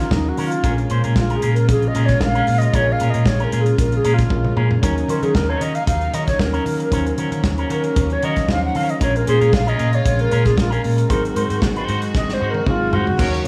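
An airy, expressive alto flute solo opens this glamorous, danceable disco excerpt at 115 BPM over Ebm7, Bbm7 and Ab7 chords, backed by a punchy, overdriven fingered bass, a twangy envelope-filtered electric guitar, a worn, slightly out-of-tune tine electric piano, floating sul tasto strings in the background and an up-front soul drum kit with dark cymbals whose fills arrive at 4.3 and 12.1 seconds, before a clear, lush string section slips in at 13.2 seconds, with plate reverb on the flute, guitar, piano and strings in a small room.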